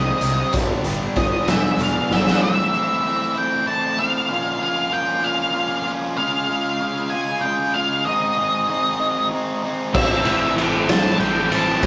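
An octave-fuzz lead guitar carries a dark, distorted melody over a biting overdriven guitar riff bathed in spring reverb in this cathartic, restless quiet-loud alternative rock excerpt in 6/8 at 64 BPM, where a raw, punchy garage drum kit, a round foam-muted bass and a compressed fuzz guitar drop out around 2.4 seconds after a drum fill closes the opening solo, then return at 9.9 seconds joined by a very quiet double-tracked distorted guitar, all in a rough rehearsal-room sound with a stone room's echo.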